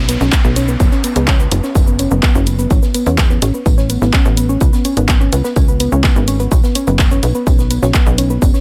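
Melodic techno with a dark, dramatic mood, this short excerpt from a longer piece moves in a straight four-four pulse. A soft, round pluck built from detuned triangle, sine and sawtooth layers with a touch of noise plays arpeggios from the start, its full-bodied tone colored by chorus, a moving notch, dub echo and sidechain pumping. Beneath it, a tight, driving sequencer bass of sawtooth and square waves with ring modulation sits up front, its fast-attack, decaying notes also pumping with the sidechain. A downlifter sweeps through the opening until 2.7 s, and a layered house kit of handclaps, hi-hat and shaker comes in at 0.1 s, joined by a punchy electronic kick at 0.3 s, while a very quiet acoustic kit of hi-hat, medium-tuned snare and tambourine adds natural studio-room texture. The harmony moves from F#5 to A, C#5 and back to F#5, all set in a small room reverb.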